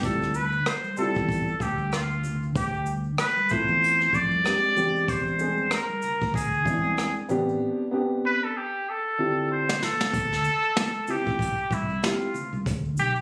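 A trumpet with a straight mute carries the melody up front, its tone nasal and breathy with light vibrato and scooped notes, sounding both clear and somewhat distant in the room. This is a smoky, cool jazz-hop cut at 95 BPM in D dorian, with a swung 16th-note feel, taken from a longer piece. Beneath it, a dark upright piano plays woody, boxy chords through a progression that moves from Dm11 through E7alt and Am11, stopping at 12.3 seconds. A fingered electric bass adds round, low support, while a jazz kit played with brushes brings a medium-tuned snare, boomy kick, hi-hat, rim click and shaker, with a drum fill from 8.9 to 10.1 seconds leading into a new section built on rootless voicings. An egg shaker and congas sit bright and band-limited in the background, lending a vintage edge. The whole take has the small-room sound of a phone recording, treated with studio reverb and compression.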